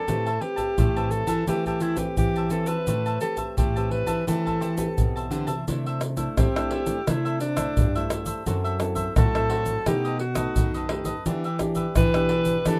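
A clear alto saxophone with vibrato, soft attacks and scooped jazz-style notes opens up front over crisp picked cavaquinho and fingerpicked classical nylon-string guitar with audible finger squeak, joined at 0.1 s by a second nylon-string guitar on bass and close, dry percussion of deep surdo, pandeiro, tamborim and tube shaker played with soft hands. It is all a yearning, nostalgic samba and choro at 86 BPM that rests on Am9 in A minor before moving to C major at 5.7 s. There the saxophone takes its solo through C69, F#m7b5, B7b13 and Em7 harmonies in a moderate booth ambience.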